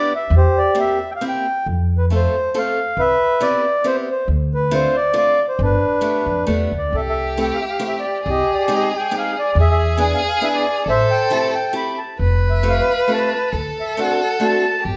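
Bittersweet and whirling, this musette waltz excerpt in C major sways at 136 BPM in 3/4 with a rubato feel, as a mellow, reedy accordion carries the melody over a bright, boxy picked steel-string acoustic guitar and a woody pizzicato upright bass, joined at 6.9 seconds by a rich violin second line with vibrato and portamento, all heard as a band playing live in a large studio with moderate reverb.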